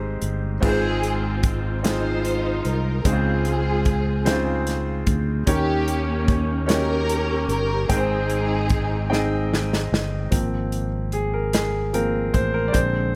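A lush, bowed string section carries the melody with expressive vibrato and a soft attack from 0.6 to 9.5 seconds in this slow, soulful gospel excerpt in 6/8 at 49 BPM in Ab major, moving through Abmaj7, Dbmaj7 and Eb7 chords. Beneath it, a clear, intimate baby grand piano with audible action noise, a round fingered electric bass and an airy acoustic drum kit with a punchy kick and crash, hi-hat and snare hold a reverent accompaniment. A drum fill from 9.1 seconds leads into a closing piano solo at 10.3 seconds, all set in light reverb.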